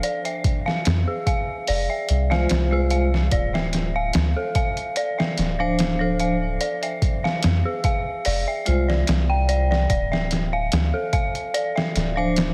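Trip hop at a slow 73 BPM in D minor, hypnotic and cinematic, this passage cut from a longer piece opens on an eerie, inharmonic detuned synth bell playing arpeggios through chorus, delay and vintage 12-bit grit, over a muffled, pitched-down sampler drum kit with a thumpy kick, overdrive and a lightly swung sixteenth-note feel. A deep, round dub sub bass joins at 0.9 seconds, and a bright, metallic vibraphone struck with hard mallets adds ringing accompaniment from 2.3 seconds, softened by a low-pass filter and colored with tremolo and tape echo. The chords alternate between Fm and Dm7 in a light reverb, and the whole mix carries a heavily compressed, radio-like sound.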